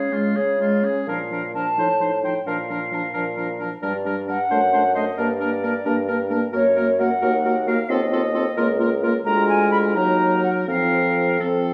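A stormy, restless classical-period movement for wind quintet opens with all five players sounding together. The flute carries the melody with a pure, straight tone and crisp attack, and the oboe shapes a second line beneath it. The French horn and the mellow clarinet fill in the accompaniment, the horn sounding distant and roomy, while the bassoon sits up front on the bass line; both oboe and bassoon, in a classical style, have a light vibrato. The movement moves quickly at 87 BPM in dotted quarters in 6/8, with uneven beats and rubato giving it a pushing, unsettled feel. It begins in Bb major, then darkens into Bb minor from 6.5 s and presses on toward a suspended chord near the end of the cut. A wet recital hall reverb, lasting about 1.7 s, surrounds the ensemble in this fragment cut from a longer piece.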